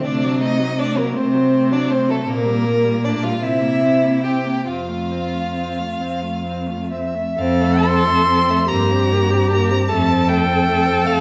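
Set in 6/8 with generous rubato, this slow romantic movement for string quartet carries an elegiac, melancholic mood, heard as a passage cut from a longer piece. The first violin sings the melody up front with a warm, focused tone, vibrato and a smooth top. The second violin sits at a distance, holding an even second line with light vibrato, while the viola shapes the accompaniment with expressive vibrato and portamento. The cello anchors the bass close and up front, its full-bodied tone colored by vibrato and sliding portamento. The quartet sounds through the wet reverb of a recital hall, and a new section begins at 7.4 s before the harmony comes to rest on an F chord at 9.9 s.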